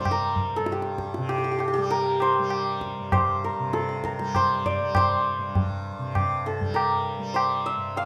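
A ringing, hammered santur sits up front, carrying the melody between G4 and F5 in raga Bageshri over a bright, buzzing tanpura drone and a high-tuned, short-ringing tabla that enters at 0.1 s, giving this introspective, meditative Hindustani classical fragment, set at 99 BPM in 5/4 with a straight feel and tuned to A4 = 439 Hz, a shimmering glow in the lush reverb of a recital hall.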